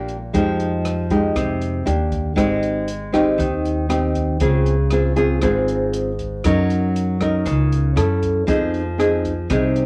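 A thumb-plucked nylon-string guitar sits up front in this sophisticated, romantic bossa nova fragment, moving through chords like Fm9, Abmaj7 and Gbm7 over a woody, thumpy upright bass on gut strings and an airy small-room jazz kit of hi-hat, rim click and boomy kick, all under light reverb and the worn, warbly pitch drift of old cassette tape.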